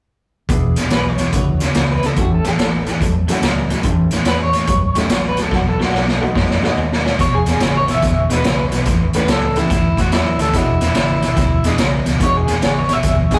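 Swaggering and soulful, this electric blues shuffle is a short cut from a longer piece with a loping swing feel and a rough rehearsal-room sound under light reverb. The raw garage drum kit sits up front, gritty and saturated, with a boomy kick, a medium-tuned snare, hi-hat and a rolled-off top, and it plays a fill at 5.5 seconds. A cranked stack guitar drives the low riff with a bright, overdriven picked tone, while a dark, round, foam-muted electric bass stays in the background and a brilliant, woody upright piano adds open accompaniment. From 0.9 seconds an electric guitar through a small old amp carries the melody in a dusky, slightly broken-up voice with tremolo and analog delay. At 9.2 seconds an amplified, overdriven harmonica takes a jazz-style solo full of tongue slaps, scooped notes and light vibrato as the changes move from E7 through A9 to E9, and then the guitar melody returns at 12.2 seconds.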